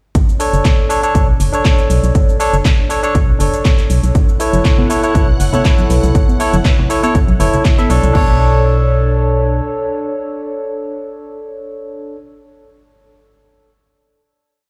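Heard through a big sound system in a bare stone room, this short, late-night deep house piece sets a punchy four-on-the-floor kick and a house kit of metallic hats, shaker, claps and crash under a hollow, organ-like FM bass riff with sidechain pumping, barky tine electric piano stabs with dub echo and a very quiet, warbling tape-like pad; from about 4.2 seconds a shimmering string machine, a dusty lo-fi pluck arpeggio with tape echo and soft background congas join briefly, then the drums and bass drop out, leaving the piano and pad on a final chord until 12.2 seconds.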